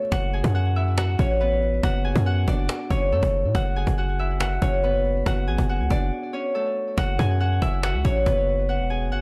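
A punchy, heavy 808-style bass sits up front in this eerie, dark half-time hip hop and trap fragment, beneath a bright, fingerpicked Celtic harp melody ringing through delay and a woody cajon with faint snares struck by hard hands, set in light reverb and small room ambience with a touch of lossy grit, pausing for a break at 6.1 s before a new section arrives at 7.0 s.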